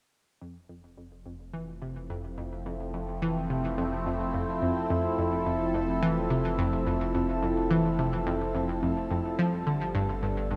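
Bathed in a wet plate reverb with a long three-second tail, this ambient, sequencer-driven space music feels hypnotic and mysterious in a straight 4/4, and it is a cut from a longer piece. A sweeping resonant pad holds sustained chords up front, its detuned, wave-folded tone colored by chorus, phaser and shimmer reverb, with a slow attack and long release. Beside it an analog pluck repeats a riff with a fast attack and short decay, its round, bright sawtooth edge carrying a noise layer, ring modulation and a filter sweep, treated with chorus, delay and shimmer reverb. Beneath them a warm sine sub bass sits deep and mellow. All three parts fade in together from 0.4 s to 4.9 s, where a second section begins, and the harmony moves from Fmaj7 to G7 at 9.4 s.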